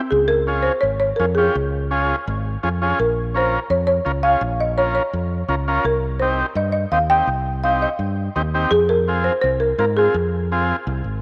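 Set in a moderate plate reverb, this fiery, danceable cumbia at 167 BPM carries a woody, rustic marimba melody over a dark, round, up-front fingered electric bass from 0.1 seconds and a buzzy, heavily vibratoed overdriven combo organ entering at 0.5 seconds, all moving through Db, Bbm, Cm and Fm.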